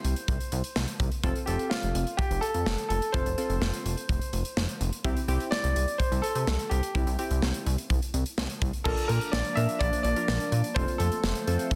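Synth-pop at 126 BPM in F major, nostalgic yet upbeat, with a clear, intimate grand piano carrying the melody through tape echo over round, chorused analog keys, a glossy pulse-wave synth bass and a punchy, polished studio drum kit with bright cymbals, and at 9.2 seconds a swirling, nasal phased pad joins in the background as the chords move from Bb back to F, all in a dense, heavily limited mix with light reverb, cut from a longer piece.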